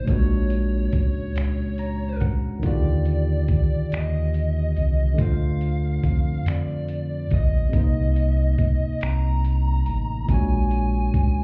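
Heard muffled as if through a wall, the recording sits in a club-like reverb that gives this short cut from a longer piece a yearning, late-night haze. It is a slow six-eight R&B groove at 47 BPM with a straight feel, moving through Bb7alt, Ebmaj9, Dm7 and Cm7 before returning to Bb7alt. A compressed, sampler-style soul kit sits up front with finger snaps, hi-hat and a thumpy kick; it is gritty and overdriven, re-recorded in a small room. A round analog bass with a fast attack holds the low end with sustained, deep tones, while a bright, barky tine electric piano plays clean accompaniment and adds a fill from 1.3 to 2.6 seconds. Above them, a picked electric guitar carries the melody with a dark, distorted fuzz tone and slapback echo, set further back than the other parts.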